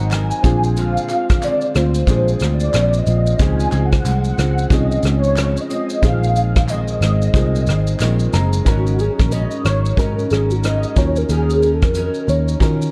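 Mellow and wistful, this bedroom-pop excerpt at 91 BPM with a gentle 16th-note swing sets a velvety, detuned synth lead with ensemble chorus and tape echo over lushly chorused, warbly picked acoustic guitar, an intimate, woody upright piano with cassette-tape colour and audible action noise, a round, foam-muted electric bass and soft brushed drums with a punchy kick up front, and faint, crisp handclaps in the background until 8.2 seconds; a piano fill from 7.7 seconds leads into a synth lead solo at 8.7 seconds, with chords moving from Bb9 and Dbmaj7 to Ab7sus4 and Ebm7 in a dark studio production.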